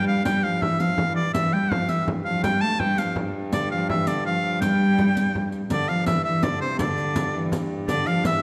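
Rustic and festive, this medieval dance moves at 110 BPM in a straight 6/8, with an edgy, up-front shawm carrying a folk-style melody over a rich, bowed cello second line full of vibrato and portamento. A nasal, reedy viola da gamba rings a low G drone in the background. A small, bright frame drum and a riq with dark jingles join softly behind them at 0.3 s. Heard in a recital hall with a dark production, the cut shifts into a new section at 5.7 s.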